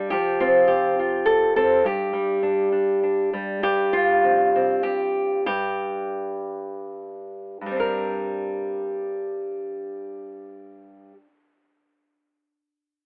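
A bright, fingerpicked nylon-string guitar opens at once on an F5 chord, moving to G5 at 1.8 seconds, in this reflective, haunting solo folk piece in G minor. Played in a classical manner and set up front, the guitar carries everything alone from the start until 11.3 seconds, ranging from G2 up to Bb4. The 3/4 pulse is rubato, drifting between 72 and 105 BPM, and the playing slows down from 3.6 to 7.6 seconds before a final passage. A light reverb surrounds the instrument, while a telephone-like tone colours the whole recording. The clip is cut from a longer piece.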